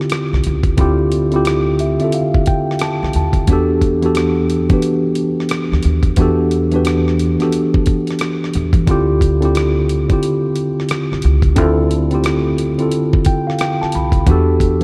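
R&B with a neo-soul lean, this introspective, sultry excerpt moves at an unhurried swung pace, its worn, slightly out-of-tune tine electric piano sitting up front with clean, direct chords that drift between Dm11 and Em11 and break into fills around 1.5 and 12.9 seconds. A dusty, sampler-style drum kit pushes a thumpy kick, hi-hat and rim click through gritty compression, while a woody pizzicato upright bass enters at 0.3 seconds. The dreamy mix is soaked in lush hall reverb and vinyl crackle.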